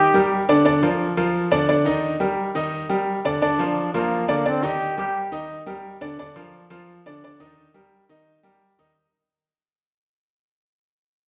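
A clear trombone carries the melody in a pop style, with light vibrato and scooped notes, sounding distant and roomy even while it sits up front. It speaks briefly at the start, then returns from 3.4 to 5.3 seconds. Beneath it, a baby grand piano accompanies throughout, intimate and natural, with long sustain and audible action noise. This sunny, danceable Latin passage moves at a brisk 174 BPM in a straight 4/4, with harmony alternating between Eb and Bb, and the instruments are tuned slightly below standard pitch. A recital hall reverb lends a churchlike resonance, the top end is rolled off, and the whole short clip, cut from a longer piece, fades out across its full length.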